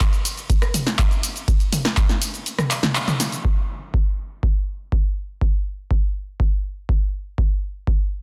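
House excerpt with a raw, driving feel, built on a deep, up-front electronic kick drum that runs through the whole clip except for a dropout from 2.5 to 3.4 seconds, while a punchy, tape-warm analog drum machine with filtered handclaps, hi-hat, ride cymbal, rim click, shaker, snare and toms plays only until 3.4 seconds, its snare, clap and hats carrying a short small-room ambience, with a band accent at 3.0 seconds before a new section begins, all under light reverb and a dense, heavily limited modern master.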